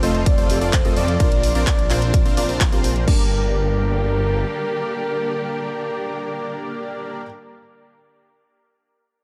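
Festival progressive house at 128 BPM in G minor, this powerful, euphoric passage is cut from a longer piece and opens straight into a drop that runs until 3.1 seconds, moving from F to Bbadd9 before settling on G minor. The punchy, overdriven electronic kick sits up front from 0.3 seconds, layered with a pop drum kit of crash, ride, hi-hat and handclaps that carries a small-room character, and both drop away at 3.2 seconds. Beneath them a thick, menacing detuned saw bass beats with saturation, pumping against the kick until 4.4 seconds. A punchy supersaw stab plays the riff with a filter-plucked bite, a moving notch and tape echo, while a breathy, flute-like synth lead carries the melody with a soft, warbling vintage tone, chorus and vibrato. Underneath, a rich studio string section holds sustained bowed chords and a felt-muted upright piano adds mellow, intimate accompaniment with audible action noise, all in a dry mix with little reverb.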